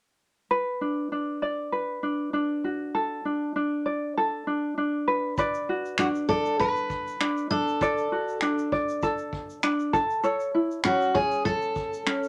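A moderate studio ambience with a short room decay frames this brief acoustic pop cut from a longer piece, its heartfelt, carefree mood carried at 99 BPM in 4/4 with a light swing on the sixteenths. A tenor ukulele opens at 0.5 seconds, thumb-plucked and light, sitting up front as it plays the accompaniment through Bm and D5 before a short pause in the harmony. At 5.4 seconds a vintage brush drum kit enters in a natural studio room, its punchy kick joined by brushes, finger snaps and shaker, set lower in the mix than the other parts. A picked steel-string acoustic guitar follows at 6.0 seconds with the melody, its jumbo body and fresh strings giving a full-bodied, up-front tone. Together the parts move through Bm, D and A to the close of the passage.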